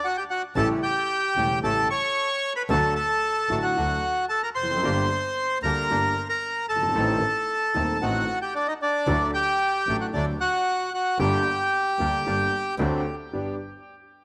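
A reedy, up-front bandoneon opens this melancholic, passionate tango fragment alone, carrying the melody with a touch of tape echo before the band joins at 0.6 seconds. Its line moves with a rubato feel in common time, giving the phrases a pleading, unhurried push and pull. Beneath it, an upright piano supplies woody, polished accompaniment with long sustain, while a second bandoneon, bright and airy, adds stabs from further back in the mix. A single bowed double bass anchors the low end with a soft attack and a nasal yet pure, floating tone, heard close and intimate. The harmony circles through A7, D, Gm and a diminished chord before a closing D7 settles on G, and light reverb with studio ambience frames the playing until the melody stops at 12.8 seconds and the accompaniment rings on to 13.6 seconds.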